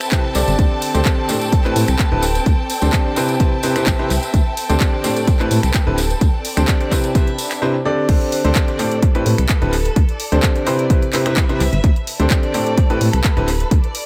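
Set in a small room with light reverb, this echo-heavy mix cut from a longer piano house track has a feel-good, euphoric glow at 128 BPM in a straight 4/4. A bright, vintage grand piano sits up front with a long sustain, playing a riff over Cmaj7 and D7sus4 chords with touches of analog delay and sidechain pumping, and it is joined by an overdriven, punchy electronic kick and a round, dark FM bass with a fast attack. A house drum kit with crash cymbal, finger snaps, handclaps and warm hi-hats carries analog delay. A distant string section adds expressive, bowed texture with vibrato and portamento throughout. For the first 7.6 seconds, a clear, biting violin section holds sustained chords in the background while a tambourine sits faintly in the room. An electronic swell then leads into the drop at 8.1 seconds, where an Am9 briefly colours the harmony before the piano, strings, kick and bass carry on to the close.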